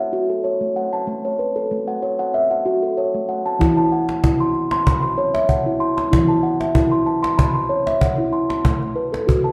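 A dark, wet reverb like that of a large scoring stage surrounds this short cut from a longer piece of meditative world music, giving it a dreamy, calm air. Up front, a steel tongue drum struck with soft rubber mallets plays ringing arpeggios from the start, its round, pure tone spanning E3 to C6 with a mellow, airy softness. At 3.6 seconds a woody cajon joins, also close in the mix, with faint snares and the acoustic character of a live room. The pulse carries a light sixteenth-note swing, and the harmony settles on A before moving to E5 as the cajon enters, then to A5 at 8.6 seconds. The tongue drum keeps ringing until the cut ends at 9.5 seconds.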